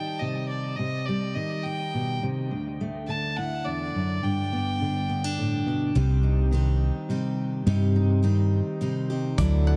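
Nostalgic and warm, this indie folk excerpt moves at 105 BPM in a straight 3/4, with an arrangement that builds as it goes. A full-bodied, fingerpicked steel-string acoustic guitar sits up front with audible finger squeak. A distant, reedy fiddle with a gut-string tone carries the melody, and both trail dub echo over chords of Cm, Dadd9 and G. At 6.0 seconds the build-up begins as a bright, picked dreadnought guitar and a dark, round hollow-body electric bass join, with the bass prominent in the mix. From 9.4 seconds a breathing, close-miked pedal harmonium adds sustained chords in the background, a twangy, percussive bluegrass banjo plays arpeggios, and a natural country drum kit with a punchy kick delivers a brief fill on hi-hat and kick. Light reverb and small room ambience frame the echo-heavy mix.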